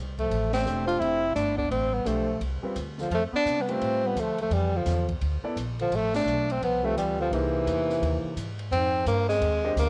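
Modal jazz in D dorian at a brisk 171 BPM with a swung feel, this hypnotic, spiritual passage is cut from a longer piece and moves from Dm7 through C7alt to Fm11, with band accents at 0.5 and 6.1 seconds. A woody pizzicato upright bass sits up front from the start, joined at 0.2 seconds by a subtone tenor saxophone carrying the melody with vibrato, a clear bass clarinet with scooped notes weaving a second line in the background, and an open drum kit with dark cymbals, a high-tuned snare and boomy kick, while a smooth, vintage grand piano comps from 0.7 seconds. The saxophone, clarinet and piano carry cassette-tape colour, and the whole home recording sits in a moderate spring reverb.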